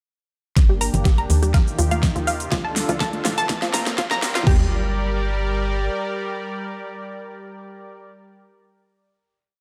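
Emotional and expansive, this short progressive house piece is built almost entirely as a rising build that starts at 0.6 seconds and resolves onto a single held final chord at 4.5 seconds. Up front, a layered, overdriven pop drum kit drives a knocking four-on-the-floor kick with floor toms and crash, alongside a big-room dance kit that adds a huge snare backbeat, metallic hats and cabasa, all set in studio reverb with a drum fill running through the build. A tight, punchy sequencer bass pumps against the kick in a dotted, nasal sawtooth-and-square pattern. Above it, a round analog pluck loops a three-step arpeggio that drifts against the bar, coloured with chorus and tape echo, while bright, dry congas play a tribal loop in the background and a very quiet riser marks the transition. Both the pluck and the lush, detuned supersaw pad move through filter sweeps during the build, and the pad, roughened by vintage 12-bit sampler grit, sustains alone until 8.0 seconds. 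The production is dark overall, with light digital ambience.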